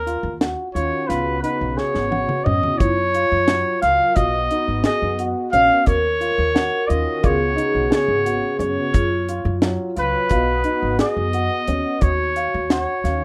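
Intricate and bright, this progressive instrumental band piece moves in 9/8 at 176 BPM counted in eighths, with a straight feel in B lydian, cut from a longer work. A mellow, jazz-style trumpet carries the solo melody up front, its soft attack sounding distant and roomy, while a woody pizzicato upright bass with steel strings anchors the low end. A dark concert grand piano with deep bass plays arpeggios through tape echo, and a dry, smooth reggae drum kit with a high-tuned snare, tight kick and rolled-off top sits up front, adding a drum fill at 1.8 seconds. A bold, detuned sawtooth pad with chorus joins in the background at 0.7 seconds, and a vibraphone played with soft mallets enters at 2.7 seconds with a metallic, ringing second line and slow motor vibrato. The chords move through D#m7, C#7sus4, F#maj7 and B in a moderate small room, and the whole has the rough feel of a home demo mix.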